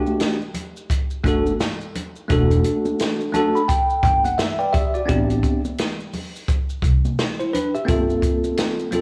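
Jazz-hop with a nocturnal, smoky mood and a 16th-note swing, cut from a longer piece, built around a bright, bell-like tine electric piano accompaniment that sits clean and up front, adding a fill from 3.0 to 5.1 seconds over minor eleventh chords. An open acoustic jazz kit with a boomy kick, medium-tuned snare and hi-hat plays close and natural, while hard-handed congas and maracas sit lower in the mix. A woody pizzicato upright bass enters at 1.2 seconds, all set in light reverb and small-room ambience.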